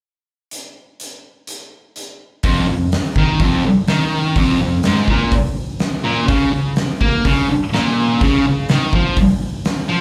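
Garage rock at 125 BPM with a swaggering, gritty mood, captured live through a club PA with moderate room reverb, opens at 0.5 s on an oversized, low-tuned acoustic drum kit of boomy kick, fat snare and hi-hat, saturated and pumping up front, before a thick, bright fuzz guitar riff, double-tracked and picked between F2 and Bb3, comes in at 2.4 s.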